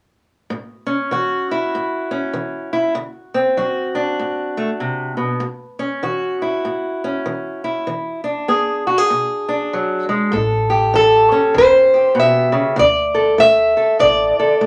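A small, wet-sounding room holds this gritty, soulful stretch of acoustic country blues, cut from a longer piece and moving at 98 BPM with a swung feel in A mixolydian. Up front, a boxy fingerpicked archtop guitar carries the melody from 0.5 seconds, its finger squeak audible as the chords move through A, D7 and E7. At 10.3 seconds the guitar turns to a solo, and a woody, growly pizzicato upright bass joins low in the mix until 14.3 seconds.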